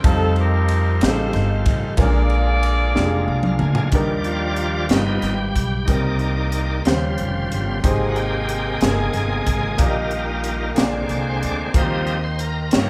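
Heard in a moderate large studio reverb with the band playing live in one room, this short slow gospel piece in 6/8 at 62 BPM, cut from a longer work, feels hopeful and reverent in Eb major. An intimate concert grand piano with audible action noise, a woody pizzicato upright bass and a crisp fusion kit with a punchy kick and high-tuned snare hold the groove from the start, while a bright, lightly overdriven tonewheel organ with key click and slow rotary speaker sustains chords beneath a vintage saxophone section carrying the melody until 3.6 s. After a drum and organ fill, the organ takes a shouting solo from 3.9 s, and a lush bowed string section with vibrato sits in the background.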